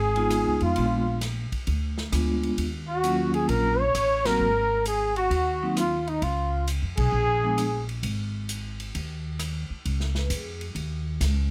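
Playful and swinging, this short cut from a longer small-group swing and bop piece moves at 132 BPM in Db mixolydian, with a veiled, bucket-muted trumpet carrying the melody up front, vibrato and scooped notes colouring its line, while a softer, distant second trumpet adds a second line in the background until both stop at 7.8 seconds. A woody, growly pizzicato upright bass sits up front from the start, a ringing vibraphone with fast motor vibrato fills in the chords, and an airy, polished big-band drum kit with punchy kick, snare, hi-hat, ride and rim click keeps the swing going. The band hits accents at 4.2 and 6.9 seconds, and the close, detailed sound has little reverb.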